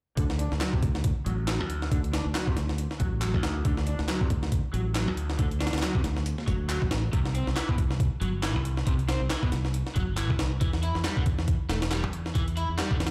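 A gritty, compressed breakbeat kit leads this funky, playful breakbeat excerpt at 138 BPM with a 16th-note swing, its thumpy kick and high-tuned snare sitting up front. A growly, punchy fingered electric bass shares the foreground, while a double-tracked overdriven electric guitar riff, colored by tube saturation, delay and a filter sweep, moves over D, C5 and Em chords in D mixolydian, with layered, tape-tinged electronic handclaps entering at 0.6 seconds in the background. Light digital reverb and the ambience of a big sound system in a bare room give the mix a large studio space.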